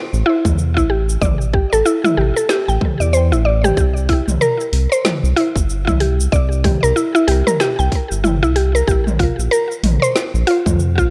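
Organic downtempo at 94 BPM in 4/4 with a swung 16th-note feel and an earthy, warm mood: this short cut sets a deep, detuned round analog bass, up front with tube saturation and sidechain pumping, under a layered deep house drum kit of dark hi-hats, shaker, a woody snare and toms, while a full-bodied, percussive mallet-like synth pluck enters at 0.3 seconds with arpeggios colored by chorus, cassette tape and delay, and a tight electronic kick joins at 0.4 seconds, all over A5, C7 and Bb5 chords in light reverb and digital ambience.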